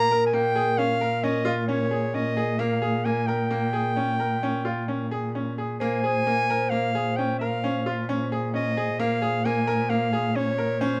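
A bright, classical-style solo clarinet carries the melody up front in this restless, pensive excerpt of contemporary chamber music in 7/4 at 132 BPM in Bb dorian, over a brilliant, open grand piano playing short-sustained arpeggios, a dark, veiled muted cello bowing a single Bb bass note with vibrato, and a metallic, ringing vibraphone with medium mallets and slow motor vibrato adding a smooth second line in the background, all resting on a Bbm7 chord for the full 11.0 seconds and captured with close, detailed microphones in light reverb.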